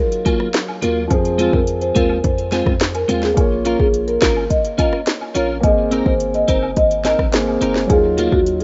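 A woody marimba carries the melody from the first moment over a dark, mellow baby grand piano whose chords pump with sidechain compression, setting a sultry, bouncy dancehall groove at 106 BPM in Eb dorian. An electronic afro-pop kit with a deep kick, sharp snare and smooth hats sits up front, joined by clean, picked electric guitar arpeggios with chorus and delay, plus cabasa and woodblock tucked in the background. A punchy, heavy 808-style bass arrives at 0.8 seconds as the chords move from Ebmadd9 through Fm, Bbm and Abadd9, all in a rough home demo mix with a small room's light reverb.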